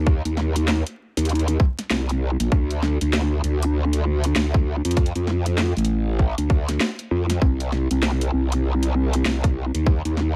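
A 98 BPM groove in 4/4 swings its sixteenths at 61%, giving this gritty, funky glitch hop cut in C dorian a loose, head-nodding pull. An overdriven electronic kick drum sits up front with a tight, layered punch, joined by a drum and bass drum kit whose cracking snare and bright hi-hats carry the same overdriven edge. Underneath, a growl bass moves between A1 and F2, its sine core shaped by a formant filter into an aggressive, wobbling snarl with a fast attack and sustained, compressed notes. Chorus and tube saturation thicken the bass, keeping it just as forward as the drums. A layer of vinyl crackle adds a dusty digital ambience behind the parts. Taken from a longer piece, the roughly 10-second passage stays in a single section from 0.0 to 10.4 seconds.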